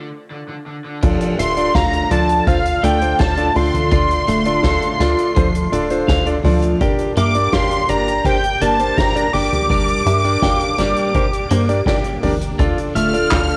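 A hazy home cassette recording with light reverb opens this nostalgic, cinematic synthwave cut from a longer piece, moving at 83 BPM in a straight 4/4. For the first second a crunchy overdriven guitar plays a short riff, coloured by lush chorus and tape echo, as a filter sweep moves across the electric grand piano. At 1.0 s the full band arrives over Dm, shifting to Gm and back: a swirling, detuned analog pad sits very quietly under a twangy electric guitar at the edge of break-up picking arpeggios, while a vintage electric grand piano with a clangy low end punctuates with stabs. A tight, nasal sequencer bass drives the low register against a boomy hall kick and a soft-mallet kit with dark cymbals, snare, toms, hi-hat and handclaps. From 1.4 s a thick, bold unison lead carries the melody up front with vibrato and subtle chorus, shadowed far in the background by a shimmering string machine line of violins in a high register.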